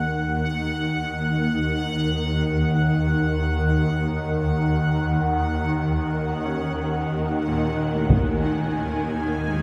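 A swarming, detuned drone sits up front in this ominous dark ambient fragment, its warbling sine tones evolving beneath a phaser and their own reverb in the low register. Above it, a bright, bubbling sawtooth texture steps through random resonant filter changes high in the range, thickened by chorus and its own reverb. In the background, a clear, intimate concert grand piano fades in across the whole 9.6 seconds, its arpeggios carrying deep bass, audible action noise and long sustain through a delay. Near the end, at 8.1 seconds, a taiko ensemble struck with hard sticks lands briefly, its vintage, band-limited sound dulled by a low-pass filter. The whole piece floats in free time inside a huge, wet ambient reverb with an eight-second decay, leaving a tense, unsettling atmosphere. It is cut from a longer piece.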